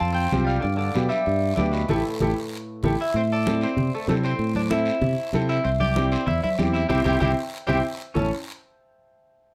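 Driving and danceable, this cumbia excerpt in A minor moves at 192 BPM, with a ringing, fingerpicked concert harp carrying the melody over a bright, picked clean electric guitar line, a warm, up-front fingered electric bass and a raspy, dry guiro, while a clear, woody upright piano and hard-handed congas in the background join at 0.3 seconds, and the band hits accents at 1.9 and 6.9 seconds in a moderately ambient studio room.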